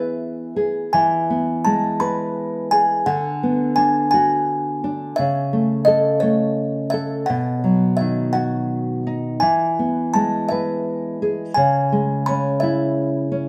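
A rubato 6/8 lilt at about 57 BPM in dotted quarters sets the pace for this sleepy, gentle children's lullaby in E major, cut from a longer piece and drifting through chords from E to Bm/D, A/C# and B before returning to E and closing on C#m. Up front, a delicate, tinkling music box from a large, slightly out-of-tune box carries the melody in a boxy small-room tone. A warm, thumb-plucked classical nylon-string guitar, also up front, supports it throughout the 13.5 seconds. Both parts sit in a wet stone-room reverb that gives the live, single-room performance a soft halo.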